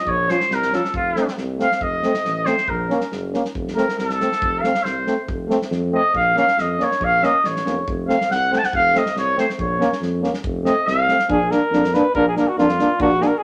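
Bittersweet and fiery, this short cut from a longer Balkan brass band piece drives along in 2/4 at 139 BPM in F phrygian dominant, and it speeds up throughout. A clear trumpet with light vibrato carries a solo line from the start until 11.3 seconds, sitting up front yet sounding distant and roomy. Beneath it, a tuba anchors the bass while a euphonium and a trombone supply accompaniment, all played in a classical style with light vibrato. An acoustic kit of punchy kick and medium-tuned snare keeps the beat with a small-room, natural quality. At 11.3 seconds a warm, present cornet enters carrying the melody as the harmony shifts to Bb, after a passage that swings between Bbm and F. A wet studio reverb gives the whole band a spacious, resonant finish.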